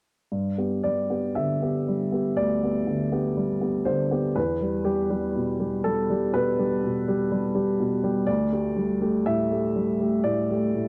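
Rubato and unhurried at 60 BPM in 4/4, this intimate, peaceful piece of neoclassical minimalist piano in G major is heard as a brief excerpt of a longer work. A solo upright piano plays from 0.3 to 10.9 seconds, woody and up front with long sustain, ranging from D2 to E5 as the harmony moves from G to Em and settles on Dsus4. The close, dry 1970s-style studio sound carries only light reverb.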